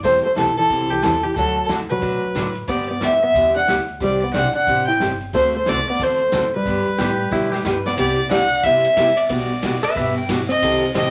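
A dark, woody fiddle leads this cheerful, down-home western swing excerpt, bowed by a single player up front with light vibrato and portamento as it carries the melody through G major at a brisk 182 BPM with a moderate swing on the eighths. Beneath it, a bright, boxy parlour acoustic guitar is picked for accompaniment, while a clean, compressed hollow-body jazz guitar, dark in tone and fingered, adds a second line from just after the start. An upright bass plucked pizzicato gives a woody, thumpy foundation, and a swinging big-band drum kit with a punchy kick, medium-tuned snare, hi-hat and ride keeps a natural studio-room feel. At 7.0 seconds a clean pedal steel guitar, played with fingerpicks and slide and using volume swells, comes up front with a second line before dropping out at 10.3 seconds. The chords move through Am7/E, D, G, Csus2 and D7 to Gmaj7, then shift to Cmaj9 and Gmaj7/B as a new section begins at 8.0 seconds, all set in a wet small-room reverb.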